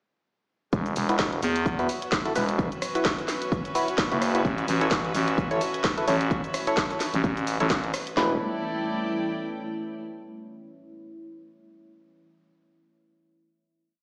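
A growling, thick FM bass sits up front from 0.7 seconds, pumping against the sidechain as it carves out chopped phrases in this swaggering, aggressive bass house piece. Two layered electronic drum kits, re-recorded in a small room, drive it: one carries a punchy four-on-the-floor kick and cracking snare, the other a programmed backbeat of closed and open hats, rim clicks, shaker and snare. Hollow, organ-like stabs fire off syncopated, closely voiced chords through chorus, phaser and digital delay. A deep, moody sawtooth pad with a sub octave swells in at 2.0 seconds behind them, while a distant chamber string section with gut-string tone and light vibrato bows slowly shifting harmony over Esus2, A and Em. The drop runs until 8.2 seconds, when the strings carry on into a final chord, all of it heard in a large studio reverb through a small-speaker sound.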